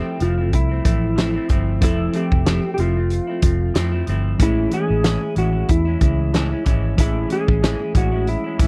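A loose, lightly swung groove at 93 BPM in 4/4 sets the pace for this hazy, nostalgic slice of indie and bedroom pop, cut from a longer piece. The acoustic drum kit sits up front with a fat snare, punchy kick and hi-hat, its saturated, gritty tone rolled off at the top, while a dark, foam-muted fingered bass, round and amped, joins it from 0.2 seconds. A clean, compressed lap steel carries the melody with slide, its sound colored by an analog chorus. Beneath it, a hollow-body semi-hollow guitar, fingered and clean, adds accompaniment through a lush chorus and vibrato effect, and a reedy electric piano with fast tremolo plays through built-in speakers in the background. The harmony moves from Fmaj7 to Amaj7 at 4.4 seconds, all captured in a dry, close 1970s-style studio sound.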